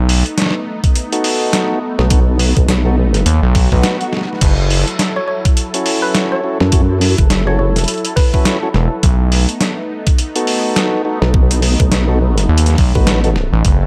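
Glitch hop with a gritty, swaggering swing, this excerpt rides a knocking, layered electronic kick and a compressed, pitched-down sampler kit of crash, hi-hat and snare, both tape-warm and up front, under a smooth detuned analog pad with chorus, sampler grit and sidechain pumping. A saturated, oscillator-sync synth bass drops out between 4.8 and 8.7 seconds, while a nasal, resonant vowel-sweep wobble bass wobbles beneath clean tonewheel organ stabs that carry a stopped rotary speaker, delay and pumping. A brief background swell leads into a break at 3.8 seconds, and a woody, wave-folded pluck adds a mellow melody from 5.2 to 8.7 seconds as the chords move from B7 to F#m7 and back.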